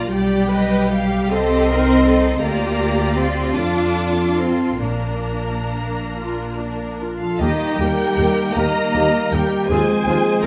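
A slow, rubato 6/8 pulse at 45-56 BPM carries this tender, serene excerpt from a romantic symphonic movement in Bb major, where lush bowed strings with vibrato set the scene: a distant, expressive violin melody over a smooth second violin line, violas, cellos and double basses, with a very quiet, round timpani entry on soft mallets at 4.8 s. At 7.2 s a clear, present solo clarinet takes up a second line, and at 7.4 s the music turns to Eb major as the brass gather beneath it in sustained chords, the dark French horns in the background, the trombones warm and tight, and a mellow tuba holding the bass. A moderate recital hall reverb gives the whole a roomy glow.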